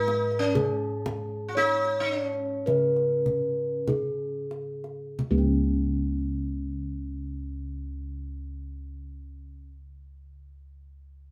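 Ceremonial and serene, this short cut from a longer Javanese gamelan piece moves at a slow 44-64 BPM in straight 4/4, easing down in tempo across its opening 5.2 seconds before settling into a second section. A bronze metallophone carries the melody from Db4 to Db5, struck with padded disc mallets for a mellow, ringing tone placed up front. Bossed gongs supply the bass, reaching from Db2 up to Ab4+25c with a round, beating, bright bronze resonance. A plectrum-plucked sitar adds a second line between Db4 and Gb4-35c, its buzzing, shimmering sympathetic strings heard only until 4.4 seconds, while the tight, acoustic kendang drum keeps time until 5.8 seconds. The ensemble plays live together in one room, with moderate studio reverb lending a gentle halo to the sound.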